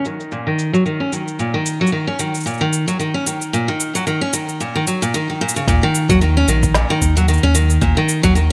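Lightly reverberant, this wistful, delicate folktronica fragment opens with a full-bodied, up-front picked steel-string acoustic guitar playing arpeggios through tape echo and a filter sweep, backed by an electronic cabasa and a woody, overdriven snare, until at 5.7 seconds a round, deep sine sub bass and a soft, overdriven electronic kick in the background join, giving the swung groove more weight.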